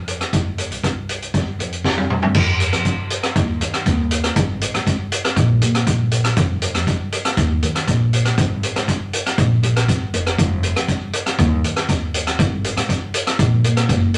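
A street-band drum kit sits up front in this calypso fragment at 120 BPM, its high-tuned snare, boomy kick and dark cymbals joined by hi-hat, rim click and toms, with a drum fill at 1.8 seconds leading into the next section at 2.4 seconds. Beneath it, a pizzicato upright bass on gut strings gives a woody, thumpy low end across the whole 14.2 seconds. The mood is dramatic and intense, with the kit's small-room, rolled-off character framed by moderate studio reverb.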